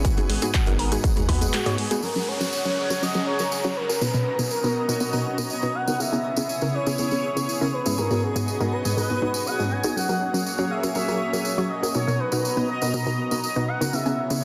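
Punchy, up-front unison plucks drive this uplifting, hopeful progressive house excerpt. They are stabbed over a lush, detuned pad with chorus and phaser, pumping against a layered dance kit of crash, handclaps and filtered hi-hats, a jingly close tambourine, and a twinkling granular shimmer in the background. A punchy electronic kick, a deep round analog bass and a sawtooth analog pluck with arpeggios open the piece before dropping away, while a smooth, expressive sawtooth lead with vibrato and tape echo takes the melody from 1.5 seconds and an electronic downlifter sweeps through from 2.0 to 6.0 seconds, all in a dense, heavily limited mix with a lush hall reverb.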